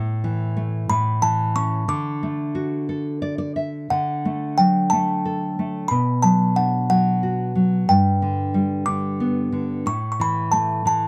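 A fingerpicked nylon-string guitar opens this tender, innocent lullaby, its full-bodied, deep classical tone sitting up front in D major. At 0.9 seconds a large music box enters with the melody, delicate and tinkling, its bright plucked notes slightly out of tune and placed just as close as the guitar. The pace is slow and rubato in 6/8 at 61 BPM, felt in dotted quarters. The guitar plays a short fill from 2.9 seconds before the music moves into a new section at 3.9 seconds, passing through B minor, G and A. A moderate studio ambience and a dark, warm production wrap this brief excerpt, which is cut from a longer piece.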